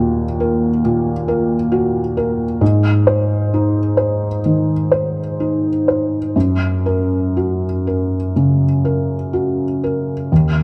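Rubato phrasing around 60-69 BPM in 4/4 carries this reflective, wistful neoclassical minimalist piano excerpt. A lone felt-muted upright piano sits up front, soft and intimate with audible action noise, moving through Ebm, Ab and Gb across a range from Eb2 to C5 in a dark production touched by moderate plate reverb.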